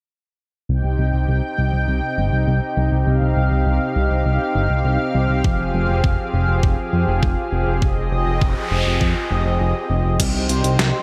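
A lush, airy synthwave pad and a fat, nasal analog bass open together at 0.7 s in C minor, both pumping with sidechain while the pad's detuned sawtooth voices shimmer with chorus over Cm and Fmadd9 chords at a cinematic, driving 101 BPM. A thumpy, tape-warm electronic kick joins at 5.4 s with studio reverb, then an electronic noise sweep enters at 8.2 s before the kick drops out briefly. At 10.2 s a detuned 8-bit drum machine comes in up front with crash, hi-hat and a medium-tuned snare in gated reverb, all within a bright, 1980s-style digital production cut from a longer piece.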